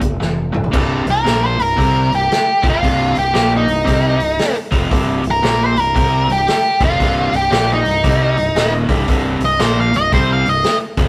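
A gritty, heavy blues rock cut in the southern rock vein opens with the vintage drum kit rolling through a short fill at 0.2 seconds over a G5 chord. The overdriven, double-tracked electric guitar riff plays alongside, bright and compressed, while the fingered bass growls underneath with its own overdrive. From 0.7 seconds the harmony settles on C minor, and the lead solo begins. The octave-fuzz lead guitar enters at 1.1 seconds, dark, distorted and up front, riding over the power trio at 115 BPM with a 4/4 swing. The acoustic kit has a punchy kick, a medium-tuned snare, crash, hi-hat and toms, and a rolled-off top end. Everything sits in a rough rehearsal-room sound with moderate stone-room reverb, and the passage is cut from a longer piece.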